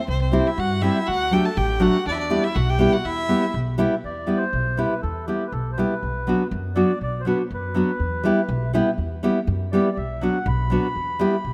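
A bright, fingerpicked nylon-string guitar sits up front, with audible finger squeak, alongside a woody pizzicato upright bass in this fiery, virtuosic Balkan wedding-band folk piece in E minor at 122 BPM in a straight 2/4, where a rich, focused bowed violin carries the melody until 3.5 seconds before the reedy, mellow accordion takes a solo from 4.0 seconds, all set in a lush hall reverb within a rough home-demo mix cut from a longer piece.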